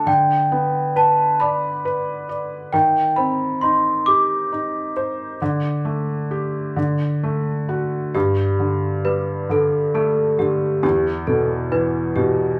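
A moderate studio reverb gives this short fragment, cut from a longer piece, the feel of two players sharing one large room. It is a gentle, sleepy lullaby for children in G major, moving in a slow, rubato 6/8 at 45 beats per minute counted in dotted quarters. A large celesta carries the melody throughout, its hard felt hammers drawing a bell-like, sweet and airy ring that sounds bright and full against the rest. Beneath it, a felt-muted upright piano plays a soft, mellow accompaniment placed up front, intimate and close enough that the action noise of its keys can be heard. The harmony drifts from G/D through Cmadd9/Eb to a suspended D that settles onto D, then opens at 8.1 seconds into a second passage built on Gsus2 and Em.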